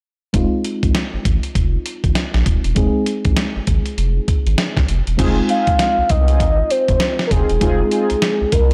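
A soft octave-layered synth lead, full and round with chorus, tremolo and vibrato, carries the melody up front from 5.5 s in this bouncy, slick new jack swing R&B excerpt with a swung feel, while a gritty, thumpy sampler-style drum kit with a tape-warm, compressed punch, a deep, nasal analog bass and a full-bodied FM electric piano with tremolo groove over Fm7 from 0.3 s, joined at 5.2 s by mellow, brassy, detuned synth brass stabs with chorus, set in a dusky digital ambience.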